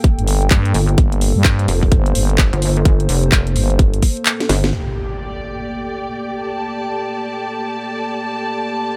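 A growling FM bass anchors this gritty, bouncy bass house excerpt in G minor at 128 BPM, its thick, fast-attack tone sitting up front over a Gm(add9) harmony. Beside it, a pulsing pluck wobble bass adds heavy, saturated weight, with chorus, overdrive and sidechain pumping on its compressed yet mellow sustain. A tight, layered electronic kick and a garage drum kit with handclaps, hi-hat and a cracking snare drive the swung drop. The kick drops out at 4.3 seconds, a drum fill follows at 4.4 seconds, and at 4.7 seconds an electronic impact lands as a bowed studio string section enters with woody, softly attacked ensemble tone and light vibrato. Throughout, a deep, moody analog pad holds detuned, wave-folded chords with chorus and sidechain pumping. The mix is close and dry, with little reverb.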